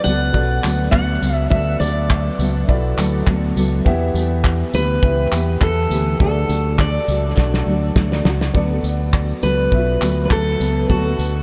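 A gently swung groove from a cloth-damped, thuddy drum kit with fat snare, tight kick, handclaps and tambourine sits up front with a round, punchy fingered electric bass, setting an easy-going, carefree acoustic pop mood in this excerpt cut from a longer piece. A jumbo steel-string acoustic guitar, fingerpicked with fresh strings and a touch of delay, carries the melody over a double-tracked, thumb-plucked nylon-string guitar and a mellow, woody upright piano with long sustain and lush chorus. The chords move from D6 through Em and D, and a drum fill from 7.4 to 8.5 seconds leads into a new section back on D6, set in a small room with light reverb.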